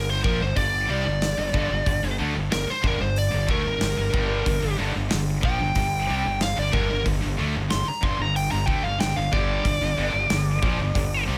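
A straight 4/4 groove from a big, punchy acoustic rock kit of hi-hat, kick and snare, entering at 0.2 seconds, drives this menacing, heavy hard rock excerpt, where an overdriven, biting lead guitar plays an up-front solo melody over two picked, distorted high-gain riff guitars (one bright, one scooped) sitting in the background, a very quiet, picked, double-tracked distorted riff guitar, a round, fuzzy fingered electric bass and light reverb.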